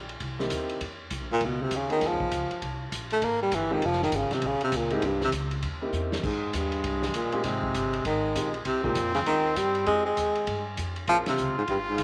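Late-night and swinging, this short cut from a longer small-group swing and bop jazz piece in F minor moves at 199 BPM, with a breathy, subtone baritone saxophone carrying the melody up front with soft scooped notes over woody pizzicato upright bass, a muffled vintage drum kit with dark cymbals and a punchy kick, and warm grand piano accompaniment, as a clear, present trumpet enters on a second line at 6.2 seconds after a drum fill, all bathed in a wet spring reverb before a band accent at 11.2 seconds.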